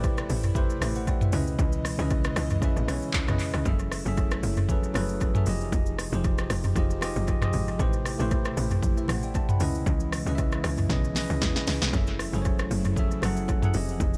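A swung 116 BPM amapiano groove in F# minor, cut from a longer piece, sets a late-night, hypnotic mood as a punchy, up-front deep house kit with handclaps, rim clicks, shaker, toms and delay drives a tight, percussive FM log drum bass under a clean tine electric piano with analog delay and an airy, breathy pad pumping softly in the background, while very quiet, close and dry congas and bongos join at 3.7 seconds, a drum fill arrives at 10.9 seconds, and the chords move through Am9, C#m9, F#m9 and Fm9 in an echo-heavy mix.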